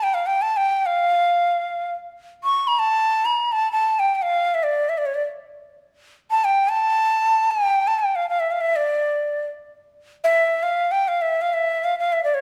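A breathy, bright ney carries this short, soulful Persian modal passage alone, its end-blown reed-cane tone sitting up front with tongued notes and vibrato across a range from C#5 to C#6. The playing unfolds in free time with a hypnotic pull, and its opening material returns at 5.9 seconds. A moderate recital-hall reverb surrounds the reedy line, lending it a sense of space.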